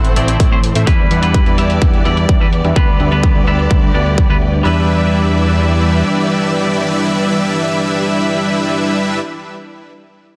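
Emotional and powerful, this excerpt of festival progressive house moves at 127 BPM in a straight 4/4, set in E minor with tuning at A4 = 439 Hz. A huge, detuned supersaw carries the riff up front, heavily compressed and pumping against the sidechain, with a low-pass filter sweep and digital delay shaping it through the first 4.7 seconds. Beneath it, a fat, saturated analog bass with a plucky filtered edge holds the low end until 6.0 s, while a bright, clean semi-hollow electric guitar picks out accompaniment with its own delay and pumping. A bowed studio string section sustains smooth, vibrato-rich chords, roughened by vintage 12-bit sampler grit. Low-passed metallic hats run from the start, and a punchy electronic kick enters up front at 0.4 s; both are re-recorded in a small room, and the drums drop away before 4.7 s as the harmony moves from Am through Em7 and G/D back to Em7. The mix is dense and heavily limited with light reverb, giving the whole passage a loud, modern sheen.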